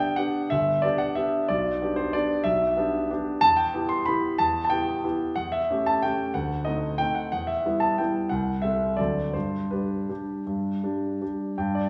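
Graceful and sparkling, this short classical piano waltz in G major sways in 3/4 at a rubato 157-196 BPM, its solo grand piano sounding smooth, vintage and up front as it ranges from deep bass to bright upper notes, moves through E minor and a D7 before settling back on G by 9.3 seconds, and rings in a wet recital-hall reverb with a hint of small-room ambience, all cut from a longer piece.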